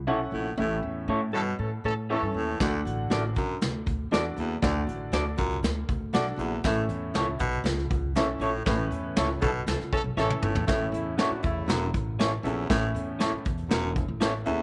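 A small room with light reverb gives this uptempo 1960s-style soul excerpt an intimate, vintage feel, with the upright bass and the brush drum kit sitting up front. The pizzicato upright bass is woody and growly, while a natural-sounding upright piano fills in the accompaniment with its action noise audible, and an electric guitar through a small old amp adds picked, slightly broken-up, lo-fi stabs. A raspy, gritty baritone saxophone carries a low riff with light vibrato, and a dark, smooth-topped horn section plays a loose second line, first appearing at 1.3 s and returning later. The brush kit enters at 2.6 s with a punchy kick, a medium-tuned snare, a pumping room sound and a rolled-off top, and the band hits accents together before a drum fill leads into a new section at 10.7 s. The groove is straight, danceable and uplifting, and the piece is cut from a longer performance.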